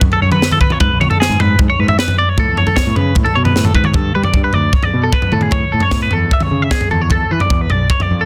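A bright, twangy twelve-string electric guitar plays clean picked arpeggios up front, colored by warbly pitch drift and plate reverb, in this short, wistful math rock and midwest emo clip at 152 BPM in A major, driven by a crisp, airy fusion drum kit with a high-tuned snare and punchy kick and a growling, overdriven fingered electric bass, all in a dense, heavily limited modern master with little room sound as the harmony moves from F#m through A and G to Amaj7 and E7sus4.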